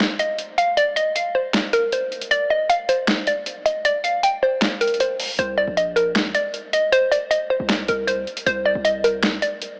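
This short cut from a longer trap-flavoured hip hop track moves at 156 BPM in 4/4 with a half-time feel, its beat carried by a dusty soul sampler-style drum kit of handclaps, hi-hat and a medium-tuned snare, compressed, overdriven and gritty, sitting up front. Over it a hollow square pluck carries the melody between Bb4 and G5, a bouncy, warbling, detuned voice with a vintage, mellow character and chorus on it, also placed up front. The opening stretch to 5.4 seconds is a break over drums and pluck alone, then a punchy, heavy 808-style bass arrives at 5.4 seconds on a Bbadd9 chord, low in the mix between Bb1 and C2 and decaying after each fast attack. The mood is melancholic and dark, and the whole recording has a light reverb and an AM radio sound.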